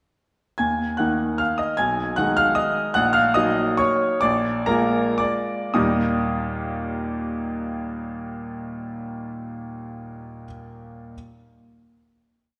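Wistful and elegant, this brief classical piano waltz in 3/4 is a complete piece for a clear, intimate baby grand played solo from 0.6 to 11.2 seconds, its tune in octaves over a waltz bass with audible action noise and long sustain up front in a wet concert hall reverb, moving rubato between 104 and 160 BPM through Ebm, Abm/Cb, Ebm/Bb and Bb7, slowing from 2.4 seconds before settling on a final Eb chord at 5.7 seconds.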